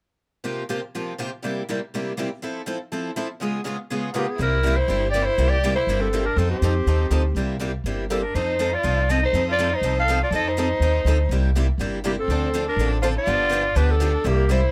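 Two picked acoustic guitars, one bright steel-string and one boxy swing-style, open this charming, lively stretch of swinging gypsy jazz on their own from 0.4 s, before an expressive, nasal bowed violin with portamento joins on a second line at 4.1 s and a raspy, growling clarinet takes the melody, with a dark, woody pizzicato upright bass entering up front at 4.4 s, in a close, detailed recording with little reverb.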